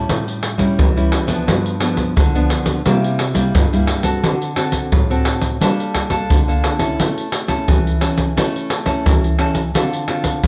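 Nostalgic yet lively, this short excerpt cut from a longer piece blends samba and choro at 87 BPM in a straight 4/4. A fingerpicked nylon-string guitar carries the accompaniment throughout, its full-bodied, deep classical tone sitting up front between G2 and A4, with audible finger squeak adding intimacy. Egg shaker, surdo and pandeiro join at 0.1 seconds, the tight surdo anchoring a compressed, saturated percussion bed that also sits close and forward. The harmony moves through a chain of dominant sevenths, A7, G7, C7 and D7, before a Gmadd9, an A chord and a closing Dm7 near 9.7 seconds. A moderate studio reverb gives the whole a natural sense of space.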